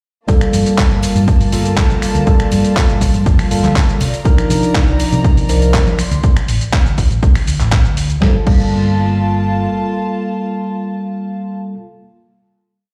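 Funky, nostalgic filtered disco house in G minor at 121 BPM, where a punchy, up-front four-on-the-floor electronic kick drives a gritty, overdriven sampler-style kit of programmed hats, shaker, handclaps, finger snaps, snare backbeat and crash, while tambourine and congas sit in the background until 6.2 s, a round hollow-body electric bass plays a syncopated line, a mellow, phased tine electric piano holds chords with syncopated pushes, and a soft-attack, floating string section sustains a pad, with bass, piano, strings and percussion all pumping under sidechain, before the drums stop at 8.6 s and the bass, piano and strings carry the closing chord from 8.2 s, all heard through large studio reverb as if played on a big sound system in a bare room.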